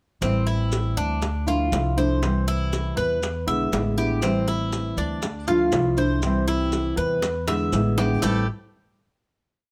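A sultry, danceable Cuban son and guajira piece in A minor at 120 BPM, built on a montuno vamp that cycles Am7, Dmadd9, C and E7 before settling on a final Am7 chord at 8.2 seconds. Up front, a mellow, metallic Cuban tres picks an arpeggiated guajeo on its double strings, while a woody, growly pizzicato upright bass plays a tumbao that anticipates the chords, and a dark, thumb-plucked nylon-string guitar strums with muted slaps. Round, low-tuned bongos with a saturated edge play steady eighths with hard hands and add a fill from 7.2 seconds, and grainy maracas sit close and dry in the background, all in a light reverb with close, detailed microphones.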